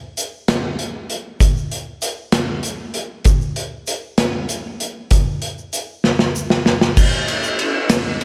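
A loose indie rock drum kit and an egg shaker enter together in a wistful yet upbeat 6/8 groove, with the acoustic kit up front in a pumping small-room sound of tight kick, medium-tuned snare, hi-hat, ride and crash, while the grainy, bright shaker sits close but in the background, and a drum fill from 6.0 to 7.0 seconds leads into a brief new section, all within a dreamy mix soaked in lush hall reverb in this fragment of a longer piece.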